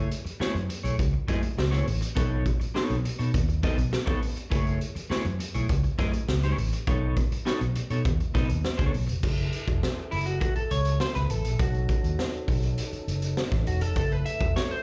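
Clean, dark picked electric guitar with analog chorus and slapback echo opens over a round, foam-muted fingered bass and a gritty, saturated garage drum kit with punchy kick and dark cymbals in this hypnotic, funky excerpt at 102 BPM in F# dorian, vamping between F#m9 and B9 until the guitar takes a solo at 9.2 seconds as a mellow, lightly overdriven tonewheel organ enters in the background with slow rotary speaker and chorus vibrato, all heard as a live club gig through the venue's PA with light reverb.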